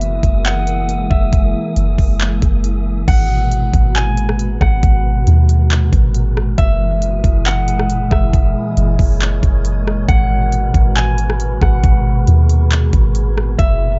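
A dark, dry mix with its top end rolled off carries this hazy, spacious atmospheric cloud-rap excerpt in G# minor at 137 BPM in a half-time feel, where an up-front, overdriven trap kit with a knocking kick, crisp hats, handclaps, rim clicks and a crash plays until 13.7 seconds over a deep, round 808-style bass, while a glassy FM pad pumps through chorus and reverb on F#13 and G#m9 chords beneath a fingerpicked, ringing concert harp melody with delay and a faint, breathy wind-like tuned noise texture.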